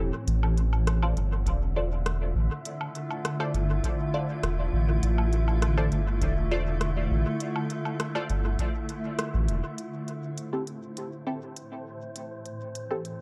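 A cloudy, evolving granular pad, muted filtered dub chord stabs with phaser, chorus and dub echo, and a round, up-front analog bass open this spacious, meditative ambient dub excerpt at 101 BPM in 4/4, soon joined by smooth-hatted electronic percussion with rim clicks and woodblock, an airy wind-like noise texture and an overdriven deep kick from 1.5 seconds, all in an echo-heavy digital ambience that shifts from Dm7 to Am at 9.8 seconds after a band accent at 9.2 seconds.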